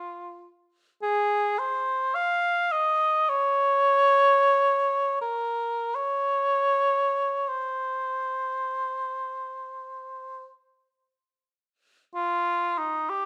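Classical in style, this short solo passage for unaccompanied cor anglais unfolds with a serene, lyrical mood and a free, rubato feel. The cor anglais carries the whole line alone from start to finish, sitting up front with a mellow tone and a light vibrato that lends the phrasing a gentle, singing quality. Its melody ranges from Eb4 to F5. A moderate reverb, like that of a large studio, surrounds the playing and gives each note a soft halo of space. Near 12.1 seconds the music turns to a brief new section before the fragment ends at 13.3 seconds, as if cut from a longer piece.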